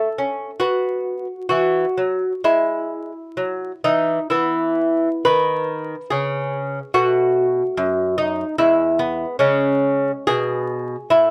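Close, detailed miking in a small room with moderate reverb and a soft bed of vinyl crackle frames this radiant, serene baroque-style dance in 3/4 and E major, where a solo lute, bright and delicate with fingerpicked nylon double strings and some octave-doubled courses, sits up front and moves with unhurried rubato at around 60-74 BPM through a short fragment cut from a longer piece.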